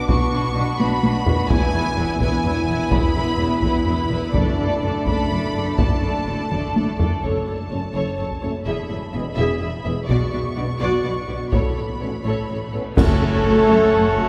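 Violin sections open this dramatic, heroic cue from an epic orchestral film score, with the upper line carrying a smooth, lightly vibrato melody while a more distant, lush second line moves beneath it. Violas with expressive portamento, mellow French horns holding sustained chords, and rich, bowed cellos and double basses in the background sound alongside them from the outset, filling out the texture in a lilting compound metre. Solo taiko drums struck with heavy sticks drive the piece forward from the start, and a round, soft-mallet timpani sounds at 7.2 seconds. At 10.1 seconds, a cymbal swell, dark clash cymbals and concert bass drum add close, dry weight. At 13.0 seconds, a band accent brings in a brassy, bright pipe organ with a trumpet stop and a very quiet trumpet section with soft-attack stabs, all sitting in a vast cathedral reverb before the excerpt cuts off.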